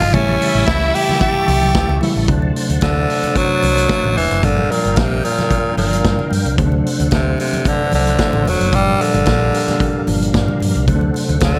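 A raspy, forceful tenor saxophone carries the melody up front in this sultry, driving disco cut at 112 BPM, backed by a tine electric piano with tube saturation that adds a brief fill at 10.1 seconds, a lightly overdriven tonewheel organ with key click and slow rotary speaker holding chords in the background, a dark, round hollow-body bass, a gritty vintage drum kit with a tight kick, very quiet hard-hand congas, and a lush bowed string section that appears only until 2.0 seconds, all in light reverb.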